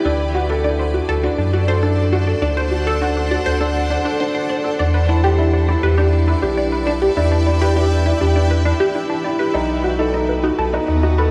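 A straight 4/4 pulse at 101 BPM carries this melancholic, intimate piano and strings electronica excerpt in E minor, where a felt-muted upright piano plays a soft, dark riff through digital delay, a round analog bass with tube saturation sits up front, a nasal analog pluck runs arpeggios through chorus, phaser and delay, and a blurred granular cloud pad holds slow-attack chords inside a huge ambient reverb as the harmony moves from D7 to Em7 at 4.8 s and B7 at 9.6 s.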